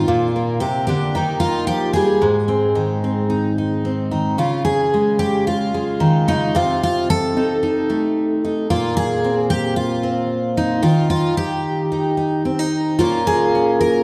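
A picked twelve-string acoustic guitar plays alone and up front through this 14-second fragment of a pastoral, hopeful folk piece at 112 BPM in 4/4. Its shimmering, octave-doubled, full-bodied jumbo tone and finger squeak move from Bb, Eb and Ab into a second passage at 4.4 s that drifts through Db, Cm6, Bbsus2 and Eb before settling on Bbm, all set in a moderate concert-hall reverb with a dark, warm production.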